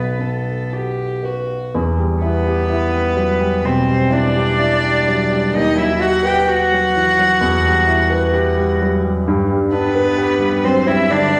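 Melancholic and yearning, this slow, romantic classical movement for piano trio unfolds with a rubato, freely breathing feel and is cut from a longer piece. The violin carries the melody with a rich, intimate tone, light vibrato, soft attacks and an airy sul tasto bow, heard close and sitting slightly lower in level than its partners. Beneath it the cello sings a second line, warm, pure and floating, also bowed sul tasto with a smooth top and gentle onsets. The baby grand piano supplies the accompaniment with a dark, mellow, vintage sound and long sustain, placed up front across its deep-to-middle range. After a brief opening, a new passage begins at 1.7 seconds and moves through a plaintive minor-rooted harmony that turns toward a brighter major chord near 9.3 seconds, with the three players performing together from 0.0 to 11.4 seconds in a wet recital hall ambience.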